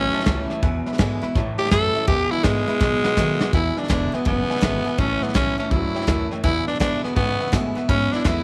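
Rockabilly at a brisk 165 BPM with a swung 4/4 feel in E mixolydian, this retro, rowdy clip puts a raspy, growling tenor saxophone up front, soloing from the start until 3.5 seconds, where a drum fill from 2.8 seconds leads into the next section. Behind it, a twangy, slightly broken-up electric guitar through a small old amp plays a riff with spring reverb, a full-bodied picked steel-string acoustic guitar and a jangly, detuned honky-tonk upright piano sit in the background, a woody, thumpy pizzicato upright bass holds the low end, and a soft brush kit with a tight kick and rolled-off top keeps time. The chords move among A7, E7 and B7.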